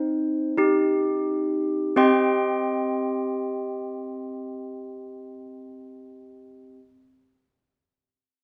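A classical tune for handbells in C minor, this short excerpt cut from a longer piece has a solemn, wintry mood at a very slow 43 BPM in 3/4 time. The handbells play solo throughout, ringing out across a span from C4 to C6 over a C minor chord. Their tone is bright and airy, with hard clappers giving each note a clear, bell-like strike, and they sit up front in the sound. The tempo slows over the opening two seconds before a second section begins at 2.0 seconds and runs to 6.2 seconds. Close, detailed microphones capture the bells within a moderate scoring-stage reverb that lets each tone linger.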